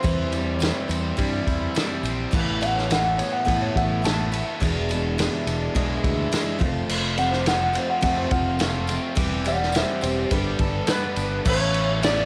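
A slightly broken-up, compressed electric guitar through a small old amp carries a solo through the first 11.5 seconds, its tone steeped in plate reverb and tape echo, in this hopeful, open-road stretch of folk and heartland rock from a cassette home recording. Beneath it, a bright, full-bodied jumbo acoustic guitar and a double-tracked, crunchy overdriven guitar riff ride a round, dark fingered bass and an up-front vintage kit with a punchy kick and medium-tuned snare, while a jingly tambourine sits distant and very quiet. At 10.9 seconds an electric slide guitar played with fingerpicks steps in with a short melody, as the chords move through C/E, Asus2, E7 and F before landing on Aadd9.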